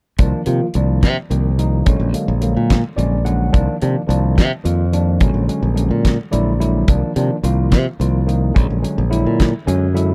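Electric jazz fusion at 72 BPM in a straight 6/8, intense and driving, with an overdriven, barky tine electric piano heard through a combo amp and lush chorus comping over Cm11 and Bb7alt, adding fills at 2.7, 6.0 and 9.4 seconds, while a growly, punchy fingered electric bass and a damped 70s drum kit with a fat snare and tight kick sit up front in a dry, dark production cut from a longer piece.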